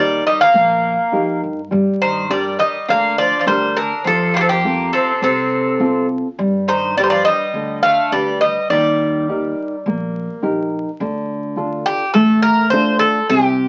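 Greek folk music from a bouzouki band, cut from a longer piece, moves at 103 BPM in a straight 4/4 with a bittersweet, cool mood in D phrygian. A bright, metallic bouzouki sits up front carrying the melody, its picked double strings partly doubled at the octave, while a second bouzouki with the same bright, metallic, double-strung character plays a lower line until 10.4 seconds. A dark, full-bodied nylon-string guitar, thumb-plucked with a deep classical tone, shares the foreground as accompaniment, and a woody pizzicato upright bass with steel strings sits low and quiet beneath. The chords travel from Eb through Gm, F and G before returning to Eb, and a brief new section arrives at 11.0 seconds on Dm. The band plays in a club-like reverberant space, and the sound carries the crackle and patina of a very old 78 rpm record.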